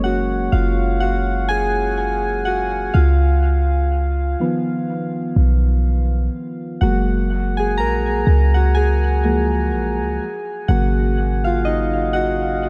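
Soft electric-piano-like synth keys take a solo across this short excerpt, their round, full-bodied tone set up front with a chorus shimmer, a filter sweep and dub echo trailing each quickly struck, decaying note. It is a smooth, dreamy slice of contemporary R&B with a slow, swung sixteenth-note feel in 4/4. Beneath the keys, a clean 808-style bass supplies a deep, boomy sine-like low end, also up front, with fast attacks that die away into darkness. Both parts run from 0.0 to 12.7 seconds, moving through F#maj7, C#7, back to F#maj7 and landing on G#7sus4 at 10.2 seconds. The whole sits in a digital ambience with an echo-heavy mix, giving the piece a floating, late-night haze.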